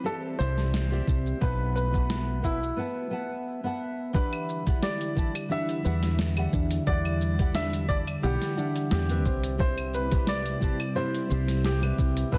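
A growly, up-front fretless bass anchors this relaxed sunset chillout excerpt in E minor at 88 BPM with a gentle 16th-note swing, alongside a gritty, compressed sampler-style kit of snare, hi-hat, shaker and claves, with a knocking, tape-toned electronic kick joining from 1.1 s, while a polished baby grand piano carries the melody over dark fingerpicked nylon-string guitar and a silky vintage string machine with ensemble chorus, as a soft, round, detuned pluck adds arpeggios from 4.2 s, all set in light digital ambience.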